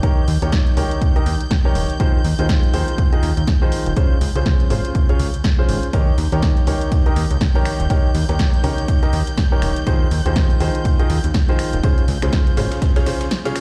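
A swung 122 BPM piano house groove in 4/4 drives this joyful, feel-good cut from a longer piece, with a dry, punchy electronic kick up front, an analog drum machine adding finger snaps, hi-hat and snare, and a plucky, funky sawtooth bass with tube saturation and sidechain pumping riding beneath Eb7, Ab6/Eb and Dbmaj7 chords in Eb mixolydian. A clear, woody upright piano with audible action noise carries the riff through a low-pass filter and digital delay, while a bowed chamber violin section holds soft, sul tasto chords in the background. A gritty, compressed sampler-style kit with a fat snare and ride cymbal slips in very quietly at 5.9 seconds, and the whole groove sits in large studio reverb as though played on a big sound system in a bare room, heading into a break at 13.3 seconds.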